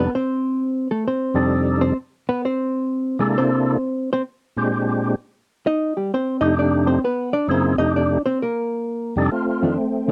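This dry, close recording with a 1970s studio feel captures a bluesy, soulful jazz excerpt swinging at 131 BPM in F mixolydian. A fat, lightly overdriven tonewheel organ carries the melody up front, its percussive second-harmonic attack, key click, chorus vibrato and slow rotary speaker giving it a churning glow. Alongside, a dark, clean hollow-body electric guitar, fingered and compressed, accompanies and takes a solo from 0.0 to 9.3 seconds over rich thirteenth chords such as F13, C13 and Bb13.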